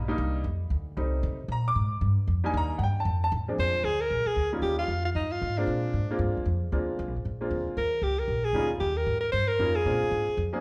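Jazz at a fast 230 BPM in 4/4, with a sophisticated, swinging feel and eighth notes swung at 61%, centered on Bb mixolydian. This short cut from a longer piece opens with a pizzicato upright bass, woody and steel-strung, sitting up front as it anchors the low end, joined almost at once by a clear baby grand piano whose natural tone and short sustain carry the accompaniment. The harmony moves through F9, Bb7, Gm7, Ebmaj7 and F before settling into a stretch that alternates between Bb9 and Eb9. At 3.6 seconds a bright alto saxophone takes the solo melody, punchy and up front, with scooped notes in a jazz style. The band plays live in one room, wrapped in a moderate large-studio reverb with a 1.3-second decay.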